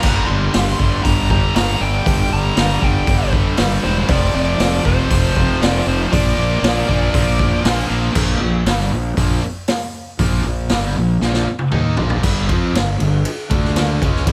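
Hard rock with a menacing, driving feel, built on a raw garage drum kit with a punchy kick and gritty, saturated small-room character up front, alongside a round, fuzzed fingered bass. Two bright, double-tracked high-gain guitars hammer out riffs, one sitting in the background and dropping out at 8.2 seconds, while a dark, bluesy overdriven lead carries the melody until 7.6 seconds. A drum fill at 11.2 seconds leads into the closing stretch of this fragment, cut from a longer piece and set in light reverb.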